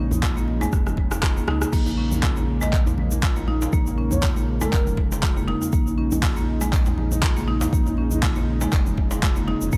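Set in a small room ambience, this short cut from a longer afro house piece carries a spiritual, hypnotic mood over a swung sixteenth-note groove in 4/4. A deep electronic kick sits at the front, joined by a tape-colored, layered deep house drum kit with crash cymbal, handclaps and rim click, which plays a fill at 0.7 seconds. Bright, very quiet congas, a hard-handed djembe in the background and a grainy tube shaker fill out the percussion. A round, dark analog bass with ring-modulated sawtooth and sine tones holds the low end, while a smooth, detuned analog pad sustains a Bbm7 chord with chorus; the pad, the bass and a woody rosewood marimba playing arpeggios all pump with sidechain, and the marimba also trails a dub echo. From 2.6 to 5.0 seconds an airy, mellow bansuri drifts in the background with vibrato, tongued, expressive phrasing and its own dub echo.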